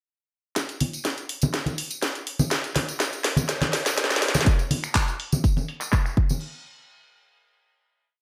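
A punchy four-on-the-floor electronic kick drives this short, feel-good, uplifting house piece at 123 BPM, with a layered programmed kit of closed and open hi-hats, cracking gated-reverb snare, handclaps, finger snaps and crash, plus saturated, soft-handed tambourine and congas up front, all set in a bright 1980s-style digital sound with plate reverb, as a drum-fill build-up from 0.6 seconds gives way at 4.5 seconds to a filter-swept outro and a final hit at 6.4 seconds.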